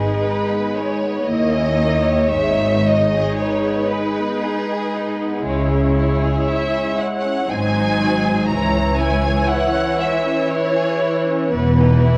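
A focused, vibrato-rich violin section carries the melody from 0.2 s to 11.5 s, singing above a slow, lyrical romantic movement for string orchestra in triple time. The pace breathes freely, with uneven beats and rubato that give the line a warm, lyrical feel. Beneath it, a second violin section, up front in the blend, traces its own bowed line, while smooth, even violas fill out the harmony. Cellos and a soft-attacked, expressive double bass section anchor the low end, the basses sitting distant in the mix. The harmony moves through minor-key shadows before settling on an open Emaj7 colour near the close. The whole fragment, cut from a longer work, floats in a recital-hall reverb and carries the worn, warbling pitch drift of old cassette tape.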